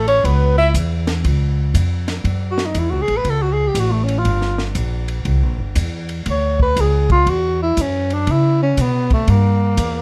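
This cool, smoky stretch of small-group swing and bop opens at 120 BPM with a breathy alto saxophone carrying the melody over up-front, woody pizzicato upright bass, while a bright, forceful tenor saxophone adds a brief second line that ends at 0.7 s. A compact cocktail drum kit with dark cymbals, a high-tuned snare and a punchy kick sits dry and low behind them, and from 2.2 s the alto moves into a solo full of vibrato, soft attacks and scooped notes over shifting chords. Light reverb and a dark, warm production lend the music a late-night intimacy.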